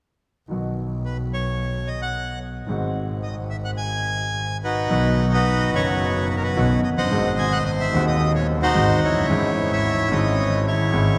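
A reedy, bright bandoneon carries the melody up front from 1.1 seconds in this nostalgic, playful tango fragment, cut from a longer piece and played with a rubato feel. A warm concert grand piano with deep bass accompanies alongside a single bowed double bass, close and earthy with light vibrato and a biting, nasal edge, both starting at 0.5 seconds. Everything sits in a wet cathedral reverb, with the harmony moving between B and G#7 before settling on C#madd9/G# at 9.3 seconds.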